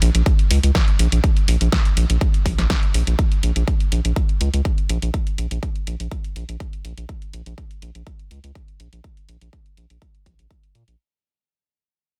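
A round analog bass sits up front, deep and dark, its sustained, fast-attack tone blending square, sine, triangle and sawtooth waves with a wave-folded edge, and sidechain pumping gives it a breathing pulse in a steady four-beat metre. This short clip of progressive house, taken from a longer track, feels driving yet dreamy. An overdriven electronic kick drum joins at 0.3 s and stays until 10.6 s, layered and punchy, and sits prominently in the mix with a touch of small room ambience. A produced house drum kit supplies a punchy snare and bright hi-hats, placed further back in the same small room. The sound is dry and dense, heavily limited in a modern master, and the whole passage fades out across its 11 seconds.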